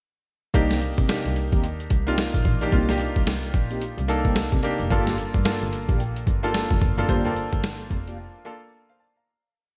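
Slick and bouncy, this short new jack swing R&B piece in C dorian moves at 110 BPM over a hard-swung, gritty boom bap drum-machine beat with a thumpy kick and overdriven, gated-reverb punch up front, while a clear, bowed double bass plays a bouncy synth-funk line with light vibrato, a natural-sounding grand piano adds syncopated rootless chord stabs and short fills over Cm7 and Gm7, and dark, detuned sawtooth synth brass with chorus and phaser drops short stabs in the background, all in bright 1980s-style digital production that fades from 7.1 seconds until the piano rings alone in a break from 8.2 seconds.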